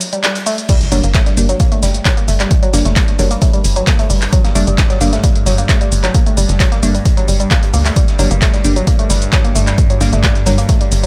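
Driving peak-time techno at 132 BPM in G harmonic minor, this short cut from a longer piece feels intense and relentless. After a brief break with a band accent at 0.2 seconds, the drop lands at 0.7 seconds on a G minor chord, as an up-front, punchy electronic kick drives the groove alongside an analog drum machine carrying crash cymbal, handclaps, hi-hat and shaker, both re-recorded in a small room. Underneath sits a very quiet, gritty, saturated acoustic garage kit of hi-hat and snare, while a faint electronic impact marks the drop. A tight, nasal sequencer bass pumps against the kick, joined by a woody, wave-folded pluck riff with chorus and delay and crisp, warbling wavetable chord stabs that also pump and echo. From 1.9 seconds a resonant drone on G2 with moving overtones, phaser and its own reverb hovers in the background, though the overall sound stays dry and close.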